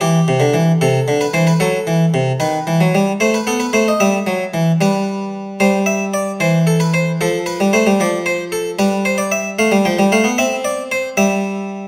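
Stately and elegant, this short excerpt from a longer baroque-style two-part invention features a solo harpsichord in 12/8, its single set of strings giving an airy, round, Flemish-style tone that sits up front in the sound. The opening phrase moves through minor-key harmony before turning toward brighter major-key chords at 5.6 s, closing on a settled cadence by 11.9 s. Close, detailed microphones capture the plucked attack, while a moderate recital hall reverb lends gentle space around it.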